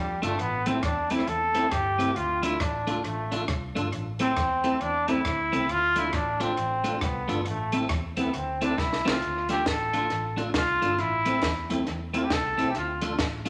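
Ska at a driving, energetic swing, led by a brilliant, up-front trombone solo with light vibrato over a dark, foam-muted bass, clean picked guitar, a lightly overdriven tonewheel organ with slow rotary swirl in the background, and a compact cocktail kit with a high-tuned snare and tape echo that plays a fill at 8.8 seconds before barely audible handclaps join at 9.7 seconds, all in a wet, roomy reverb.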